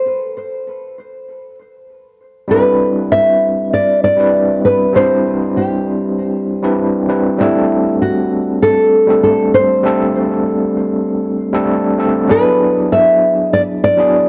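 A dry, gritty hardware recording with light reverb carries this smooth, relaxed chillout excerpt in 4/4 with a straight feel. Up front, a dark, thumb-plucked nylon-string guitar plays a classical-toned melody with tape echo. At 2.5 s an overdriven tine electric piano joins through a combo amp, its fast tremolo and analog delay colouring an accompaniment that moves through Cmaj9, D7sus4 and E9.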